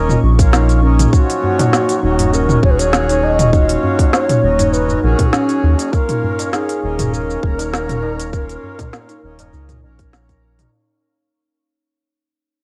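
A lightly swung 16th-note groove at 100 BPM in 4/4 drives this hypnotic, meditative organic downtempo excerpt, built on a tight, up-front electronic kick and an organic electronic kit of woody snare, smooth hi-hats, shaker and toms, with a high-tuned, close tabla tucked in very quietly from about 1.4 seconds. A round, deep analog bass sits forward in the mix and pumps against the kick, while a reedy, breathing pedal harmonium accompanies and an airy, detuned pad with chorus holds sustained chords over a Bbm/Eb to Ebm7 progression, the pad drifting in the background. A hollow, ringing kalimba spins dark, thumb-plucked arpeggios through analog delay. From 1.1 seconds a bass bansuri carries the melody with a bamboo, vibrato-laden tone and rolled-off highs, its phrases echoing through delay. The sound is a close, nearly reverb-free home cassette recording with a tape-softened haze over several parts, and the whole passage begins fading out at 4.3 seconds.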